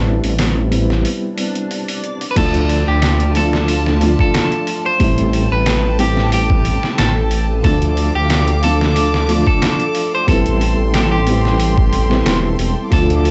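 A rumbling, detuned saw bass with tube saturation sits up front in this brooding trip hop excerpt, joined at 0.2 s by a muffled, pitched-down sampler-style drum kit with overdrive and a thumpy kick. A felt-muted upright piano, boxy and intimate with audible action noise, tremolo and tape echo, opens under a filter sweep beside a reversed, granular swelling texture that fades by 2.4 s. At 2.3 s a clean, picked electric guitar, roughened by 12-bit sampler grit and dub echo, takes up the melody, and from 2.4 s a dark, sul tasto string section holds sustained chords beneath it over a dry, gritty mix cycling between Am7 and Dm.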